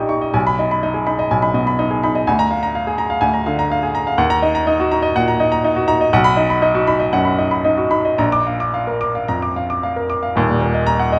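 In a flexible 4/4 with free, rubato pacing, this brief excerpt from a longer classical virtuoso piano study unfolds in a stormy, agitated minor-key mood. A solo baby grand piano sounds clear, polished and up front, its notes carrying short sustain across a span from deep bass to bright upper register for its full 11.2 seconds. A moderate recital hall reverb surrounds the instrument, as chords shift restlessly before settling back on the home minor harmony at 10.4 seconds.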